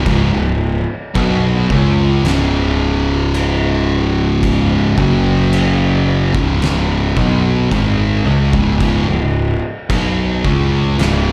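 A thick, dark, double-tracked fuzz guitar grinds out a sludgy, hypnotic stoner and doom metal riff at 55 BPM in 4/4, moving from C#5 to F#5 at 5.0 seconds and back at 6.3 seconds, over a growly overdriven fuzz bass and an oversized low-tuned acoustic kit with a fat snare, punchy kick and dark crash cymbals, all heard live through a club PA with small-room reverb in this 11.3-second cut from a longer piece.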